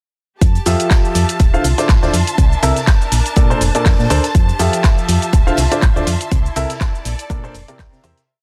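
This uplifting, joyful piano house piece runs at 122 BPM in F major, with a light 16th-note swing, and stays in a full drop from 0.4 s before fading out from 5.7 s to its close at 8.3 s. A punchy electronic kick sits up front on a four-on-the-floor pulse, with a layered house kit adding bright closed and open hats, cabasa and handclaps on the backbeat, while a very quiet, roomy acoustic kit with a soft-mallet snare and hi-hat plays an edited, looped breakbeat far in the distance. A round, dark FM bass with a fast attack carries a funky syncopated line, and a woody, intimate upright piano with audible action noise plays a close-voiced rhythmic chord riff coloured by dub echo. Behind them, a lush symphonic violin section holds a high A5, and a focused studio string section plays slowly shifting chords, both bowed with vibrato. The bass, piano and both string groups pump against the kick, moving through Fmaj9, Dm9, C13 and Bbmaj9 before a final C7, in a dry, dense and heavily limited modern mix.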